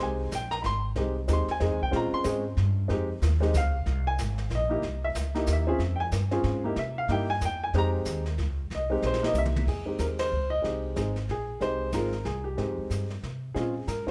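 Late-night and cool, this swinging jazz piano trio excerpt in 3/4 at 186 BPM in F minor has a dark, mellow baby grand with audible action noise soloing up front over harmonies such as a rootless Fm9 and C7#9, a woody, growly pizzicato upright bass, and softer brushed drums with a boomy kick and a fill at 9.0 seconds, followed by a band accent at 10.2 seconds, all heard through the moderate reverb of a recital hall.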